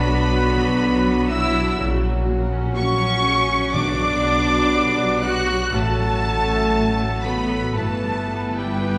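Rich, up-front bowed double basses anchor this solemn, melancholic slow romantic movement in B minor at 60 BPM, played with rubato, while a lush symphonic violin section carries the melody high above with smooth vibrato. A softer studio violin section, a hollow, airy flute section, a dark clarinet and a mellow cor anglais trace second lines, as a clear viola section, bassoon and bright, ringing harp arpeggios fill the accompaniment over focused cellos, and trombones and French horns hold sustained chords in the background. Soft-mallet timpani sound briefly from 3.7 to 5.2 seconds, and a wet scoring-stage reverb places the orchestra further back in the room in this passage cut from a longer piece.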